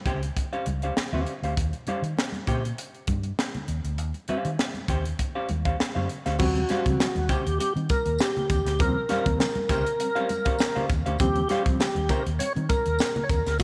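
A straight 4/4 funk groove at 100 BPM in Eb mixolydian struts along on an Eb13 chord, driven by a polished fusion drum kit up front with a high-tuned snare, tight kick and dark cymbals, a round, punchy foam-muted fingered bass, clean picked hollow-body jazz guitar accompaniment and ringing congas in the background, until at 6.4 seconds a full tonewheel organ melody with key click, chorus vibrato and slow rotary speaker steps forward, joined by reedy electric piano stabs with fast tremolo and a very quiet jingly tambourine, while the guitar stops at 12.2 seconds in this short, lightly reverberant small-room excerpt.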